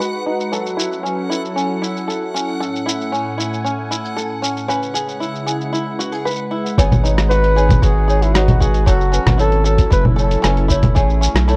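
A breathy flugelhorn carries the melody from 7.3 seconds, its jazz-style scooped notes and vibrato softened by tape echo, in this intimate, autumnal folktronica excerpt at 115 BPM in 4/4. Beneath it, a twangy fingerpicked banjo plays arpeggios through a low-pass filter and tape echo, with a filter sweep across its first 6.8 seconds, over a warbling, detuned analog pad on sustained chords, a muffled, tape-warm lo-fi kit of congas, hi-hat, rim click and shaker, and a faint reversed, granular swell. At 6.8 seconds a round, deep analog bass and a thumpy electronic kick arrive, along with a clanky, slightly out-of-tune toy piano set in the background, all in a dry, close 1970s-style studio sound moving through G#m7, F#m7, Amaj7 and C#m7.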